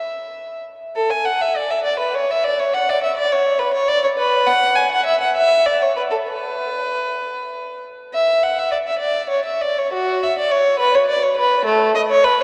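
Bathed in a long, wet cathedral reverb and a dark production, this short fragment of a classical, baroque-style suite movement features a single bowed violin, close and up front with a reedy, gut-string, period-style tone, playing a serene, dance-like line in 6/8 at around 60-71 BPM in dotted quarters, shaped with rubato.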